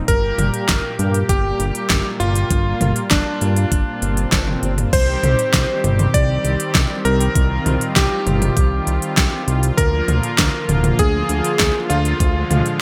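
Bright, 1980s-style digital production with light reverb and digital ambience gives this romantic, nostalgic synthwave passage, cut from a longer piece, a glossy sheen. A cutting, vintage electric grand piano carries the melody with delay over a brassy analog pad treated with chorus, tremolo and sidechain pumping, while a thick, detuned analog bass, also pumping, anchors the low end. A knocking electronic kick and an up-front pop drum kit with fat snare, crisp hats, toms, crash and gated reverb drive the straight 4/4 groove. A background electronic swell begins at 4.0 seconds and is joined by a drum fill at 4.3 seconds, leading into the second section at 4.9 seconds.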